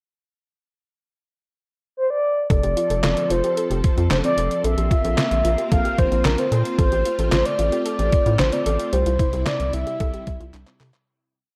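A mellow, horn-like synth lead opens this short, nostalgic and bright synth-pop piece at 2.0 seconds, carrying a motif-based melody with soft attack, vibrato, chorus and a slapback echo. At 2.5 seconds the full band arrives: an overdriven 8-bit drum machine with a thumpy kick, fat snare, hi-hat and handclaps in a straight beat under gated reverb, and a rubbery, bouncy square-wave bass sitting up front beside it. Behind them, a shimmering string machine holds sustained violin chords with a slow attack and ensemble chorus. A soft, round pluck with a warbling, detuned vintage tone plays a background arpeggio ostinato through chorus and slapback echo. The harmony moves from F through Bbsus2 and F/A to C, and the piece begins fading out at 8.9 seconds as a drum fill closes it in light reverb.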